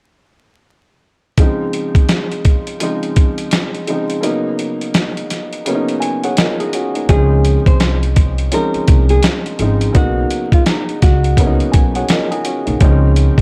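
Boom-bap hip-hop with a soulful, nostalgic mood and a lazy swung groove, cut from a longer piece. A dark, mellow upright piano carries the accompaniment from 1.4 seconds, its intimate, vintage tone softened by filtering and marked by audible action noise, alongside a dusty sampler-style drum kit with a thumpy kick, fat snare and hi-hat that sounds gritty, compressed and re-recorded in a large room. The harmony moves between Dbmaj9 and Cbmaj9, and a break arrives at 4.2 seconds, with a piano fill leading into the second section. At 7.1 seconds a pizzicato upright bass enters, growly and woody, while a fingerpicked nylon-string guitar takes a short filtered melody with tape echo until 11.6 seconds. Studio reverb and vinyl crackle lend the whole recording a worn, late-night atmosphere.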